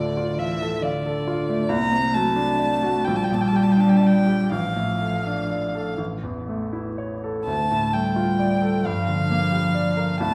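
Melancholic and elegiac, this slow romantic movement for piano trio unfolds in D minor at 40-46 BPM in a rubato 6/8, and the 10.3-second passage is cut from a longer piece. A dark, woody violin carries the melody with vibrato and a sul tasto tone up front, while a close cello in the same shaded, bowed voice sings a second line beneath it. A clear baby grand piano supplies the accompaniment with natural, long-sustaining notes, and the whole trio sits in the wet reverb of a recital hall.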